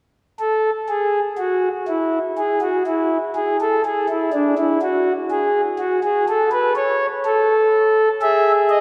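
Classical, baroque-style fugue for pipe organ, heard in a brief excerpt cut from a longer four-part work. The mood is lively and joyful, moving in a straight 4/4 pulse. A single pipe organ plays alone on a principal stop from 0.4 to 8.8 seconds, its line sitting between D4 and E5. The tone is warm and smooth, with a touch of chiff at the start of each note and a baroque voicing, and the sound sits up front. A long, wet church reverb surrounds it, with a decay of about 3.6 seconds. The opening is unaccompanied by harmony, and an E/G# chord arrives at 8.2 seconds.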